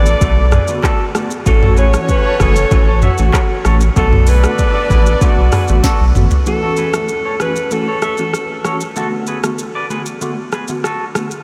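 A straight 4/4 afrobeats groove at 96 BPM in B dorian, driven by an up-front electronic afro-pop drum kit with deep kick, sharp snare, metallic hats, handclaps, rim click, shaker and toms, carries this mellow, smooth excerpt, as a round sine sub bass, a bell-like tine electric piano with ensemble chorus, a twangy picked electric guitar riff with delay, a breathy, whispered alto saxophone melody with delay and a tight, punchy horn section with vibrato, octave doubling and delay float in a dreamy wash of huge reverb, the horns stopping at 6.1 s and the bass at 6.3 s as a drum fill leads into the second section at 6.5 s.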